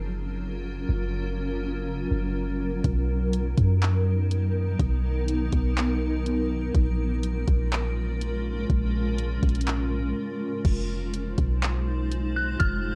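A blurred, granular cloud pad drifts up front through the whole excerpt, its detuned sustained chords pumping under sidechain and softened by reverb and cassette tape, while a deep, boomy 808-style bass rings out clean beneath it in this blissful, dreamy cloud-rap track at 123 BPM in a half-time feel. A smooth R&B drum kit with a soft kick, hi-hat, handclaps and crash enters at 2.8 seconds with a tape-warm, produced sound, and after a brief break the harmony moves from F#maj7, Bmaj7 and A#m7 toward Fm7. In the closing moments an eerie, inharmonic FM synth bell with chorus appears at 12.4 seconds, all set in a digital ambience with a homemade cassette character.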